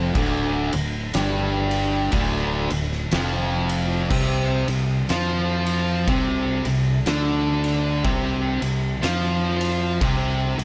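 Set in studio reverb, this ominous, hypnotic stoner and doom metal excerpt crawls at 61 BPM in 4/4 with a swung eighth-note feel. A double-tracked, compressed fuzz guitar sits up front with a distorted riff, backed by a growling fingered electric bass with overdrive, as the chords shift from Dm to Csus24 at 4.1 seconds. A saturated, gritty oversized low-tuned drum kit joins at 0.1 seconds, its boomy kick, fat snare and dark crash and ride cymbals pumping in a bright stone room.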